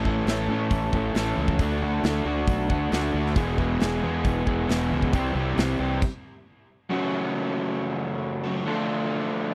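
Carefree yet wistful, this short indie rock excerpt drives along at 136 BPM in a straight 4/4, cut from a longer piece. A bright, crunchy overdriven guitar sits up front playing a picked riff, while a second raw garage guitar, mellower and set in the background, adds its own overdriven riff coloured by analog chorus and tape echo. Underneath, a dark, round fuzz bass played with the fingers and a big acoustic rock kit with bright cymbals, a punchy kick and a medium-tuned snare push through a progression of A, D, E and C. Around 6 seconds the bass and drums drop out for a brief stop, leaving the two guitars to carry a new passage over F#m and Dm until the end at 9.5 seconds. The sound is dry and close, in the manner of a 1970s studio recording with little reverb.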